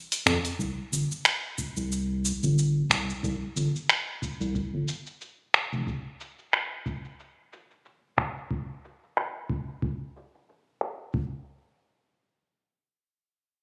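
A relaxed 4/4 groove with a light sixteenth-note swing opens this blissful, smooth sunset chillout excerpt: a gritty, overdriven soul sampler-style kit of finger snaps, hi-hat and shaker sits up front, its snare, percussion and hats low-pass filtered, with a filter sweep running across the drums from 0.6 s. A deep, tape-warm electronic kick joins at that point, while a round, dark analog bass blending square, sine and triangle tones with a wave-folded edge holds sustained notes from 0.3 s to 5.8 s. Light reverb and digital ambience give the compressed mix the feel of a phone recording made in the room.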